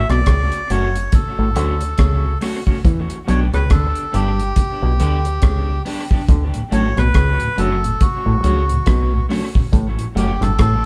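A reedy, breathy melodica carries the tune over a round, foam-muted dub bass and a dry, dark reggae kit of tight kick, hi-hat and rim click, with a stringy auto-wah clav riff and a slightly broken-up electric guitar through analog delay filling in the middle, in this uplifting, sunny roots reggae excerpt at 70 BPM in D major. The swung sixteenths give it a relaxed lilt as the chords move from Dmaj7 to Em7 and back, turning to A7 near the end. A mellow tonewheel organ with vibrato slips into the background at 6.5 seconds, and the whole band sounds played live together in a moderate stone room.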